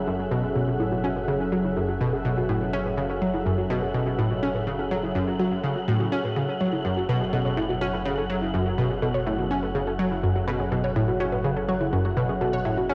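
An up-front analog pluck riff, bright and detuned with a ring-modulated edge, leads this mysterious, hypnotic ambient excerpt in F# minor at 124 BPM, entering at 0.1 s and resting on a single F#m7 chord with chorus and analog delay. Beneath it, a punchy unison pluck plays filter-swept arpeggios in the background, while an evolving, resonant sawtooth pad holds sustained chords and a round, deep analog bass with tube saturation anchors the low end. An airy, wind-like tuned noise texture drifts on top, and the whole piece sits in a lush hall reverb with the character of a home cassette recording.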